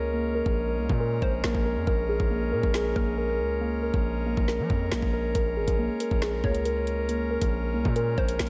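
A half-time 4/4 pulse at 138 BPM drives this dark, ominous drill excerpt in Bb minor, where muted, felt-like synth keys play soft arpeggios through chorus, a low-pass filter and tape echo over a nasal pipe-organ cornet stop holding sustained chords, opening on Bbm7, with a hint of chiff, a heavy, saturated 808-style bass sits up front, an electronic drill kit with knocking kick, woody snare, metallic hats and finger snaps enters at 0.5 s, and a very quiet, hollow square-wave pluck adds a bouncy second line that drops out at 3.6 s and returns at 6.4 s, all in light digital ambience.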